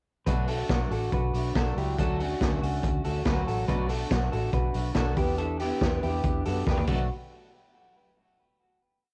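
A gritty, boomy garage drum kit sits up front with a dance-floor indie beat and off-beat open hats in this short, bittersweet and restless jangly indie pop piece, alongside a dark, round, foam-muted bass driving eighth notes, a slightly broken-up electric guitar ringing out a picked figure doubled in thirds through tape echo and plate reverb, and a shimmering, octave-doubled fingerpicked twelve-string acoustic on open chord shapes, all captured on a lo-fi home cassette recording before a drum fill at 6.7 seconds leads to a final hit at 7.1 seconds.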